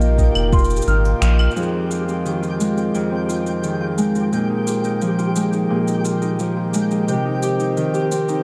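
Delicate and intimate, this short folktronica excerpt in F minor at 87 BPM sets a ringing, fingerpicked Celtic harp's filtered, tape-echoed arpeggios over reedy, breathing harmonium chords and a twinkling granular shimmer, while a round analog bass, a deep electronic kick and a faint marimba second line appear only in the opening 1.6 seconds, which close on a band accent. Light cabasa, claves and finger snaps carry on beneath a dark production as the chords move from Bbsus4 through Fm7 and Bb7sus4 to Cm.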